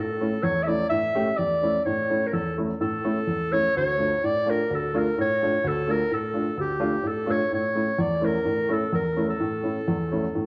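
A dark, reverberant recital-hall sound with a 1.8-second decay frames this short excerpt of festive yet soulful klezmer in A phrygian dominant, moving at 127 BPM in a straight 4/4. Up front, a roomy, warm clarinet carries the melody in a classical solo style, while a mellow, woody, slightly detuned upright piano, also up front, accompanies across the low and middle registers. Both play throughout as the harmony moves from A to Dm at 3.8 seconds and back to A at 7.5 seconds.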